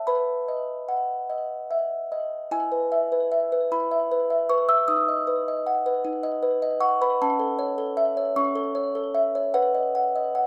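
A solo music box, delicate and tinkling with a mellow, boxy small-room character and a slapback echo, carries this tender, dreamy classical lullaby in E major at 51 BPM in a gentle 6/8, ranging from C#4 to E6 over a chord sequence of B, E, B/D#, A/C# and back to B, captured up front by close, detailed microphones with light reverb in this brief passage cut from a longer piece.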